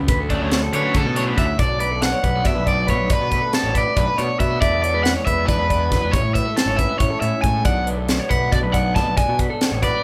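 An up-front, bright overdriven electric guitar carries the melody from 0.8 s in this wistful, bright slice of math rock and midwest emo in 7/8, moving over Dmaj7, Bm7, E7 and Amaj7 chords with a crisp, high-tuned snare and tight kick from a polished fusion drum kit. Beneath it, a round, fuzz-laden picked bass and a dark, lo-fi guitar through a small old amp with spring reverb hold the accompaniment, while a second small-amp guitar sits in the background with picked arpeggios. A double-tracked cranked stack guitar riff flashes by only from 0.3 to 1.4 s, and the whole band sounds as if playing live together in a large studio room.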